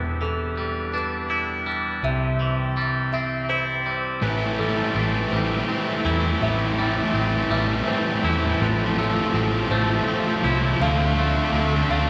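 A slow, straight 6/8 pulse at 55 BPM in A minor drives this cathartic, melancholic rock passage, where an oboe-stop pipe organ with baroque chiff holds sustained chords and a felt-muted upright piano with audible action noise plays intimate arpeggios in the background, a clean, twangy electric guitar picks its own arpeggios over a dark, round hollow-body bass, and at 4.2 seconds a bright, overdriven stack guitar enters up front with a riff that launches the build-up through Am7, Fmaj7/A and Dm7, the whole set in the long, wet reverb of a church or concert hall.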